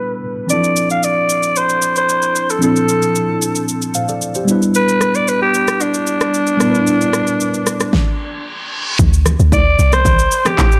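A growling alto saxophone leads this soulful, late-night amapiano excerpt in D dorian at 113 BPM, its raspy, vintage solo tone carrying vibrato and sitting up front through a low-pass filter and delay. Beneath it, a mellow, worn tine electric piano, slightly out of tune and lightly overdriven through a combo amp, comps on Dm9 and Em7 with a phaser and low-pass filter while a filter sweep runs through the opening section. After a brief break, the deep house drum kit enters at 0.5 seconds, layering handclaps, rim click, shaker, a punchy kick and a fat snare with a tape-tinged, up-front sound. A stop clears space for an electronic reverse cymbal at 8.2 seconds, leading into the drop at 9.0 seconds on a D5 chord. There a deep, round, dark log drum bass takes over the low end with a fast-attack, decaying percussive hit, joined by bright congas and bongos in the background, all in a light reverb.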